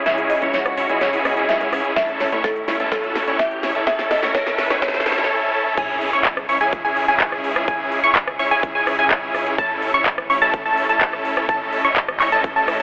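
Anthemic and powerful, this festival progressive house fragment builds as a buzzing, woody marimba melody and a dark, boxy fingerpicked acoustic guitar sit over a very quiet bowed string section, a thick detuned saw bass and an enormous, bright supersaw riff with sidechain pumping. A big-room drum kit with a huge snare and crisp hats plays a fill, a punchy electronic kick enters at 2.0 seconds, and a faint riser and swell climb toward the drop at 5.8 seconds, where a sub drop impact and a lush unison pluck arpeggio join, all bathed in a vast ambient reverb with a telephone-like filtered tone.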